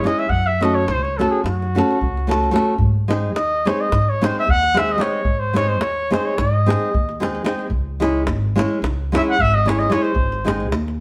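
Balkan wedding-band folk in a restless, bittersweet 9/8 at 220 BPM in eighths, set in G# phrygian dominant and tuned to A4 = 436 Hz, this excerpt from a longer piece features a classical-style trumpet soloing up front with a warm tone throughout. Beside it, a deep, fingerpicked nylon-string guitar with audible finger squeak moves through F#m, G# and C#m. A woody, thumpy pizzicato upright bass on dark gut strings enters at 0.3 seconds, and a tight, close, dry davul keeps time, all played live together in a moderate stone room.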